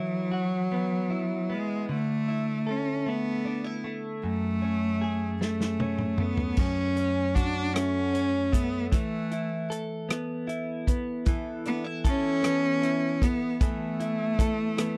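Dry and close in the manner of a 1970s studio, this heartfelt, romantic six-eight pop ballad moves at a slow 51 BPM, with a clear, focused bowed cello singing the melody up front with vibrato over a clean, double-tracked electric guitar, picked and compressed, moving through chords like Esus2, Dsus2 and F#madd9. A natural country drum kit, punchy in the kick and up front, enters with a fill at 5.4 seconds and carries the music into a new section around F#m and Esus4. At 11.3 seconds a dark, full-bodied steel-string acoustic guitar adds picked arpeggios in the background before the excerpt is cut off.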